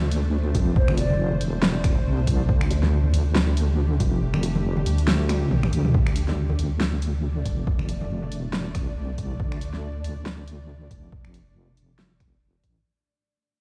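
Deep dubstep in D minor at 139 BPM, heavy and dark, with a swung half-time feel, this cut opens straight on the drop with an up-front, wobbling sawtooth bass thickened by chorus, a cloudy, evolving granular pad, and a brief breathy ney phrase with dub echo drifting in the background. A punchy electronic kick and a deep house kit of finger snaps, hi-hat, fat snare and toms drive the groove, while ringing bongos and congas with dub echo sit behind; the kick drops out at 4.2 seconds ahead of a drum fill at 5.3 seconds. From 5.9 seconds the piece fades out, all heard as if played on a big sound system in a bare stone room, with vinyl crackle over the top.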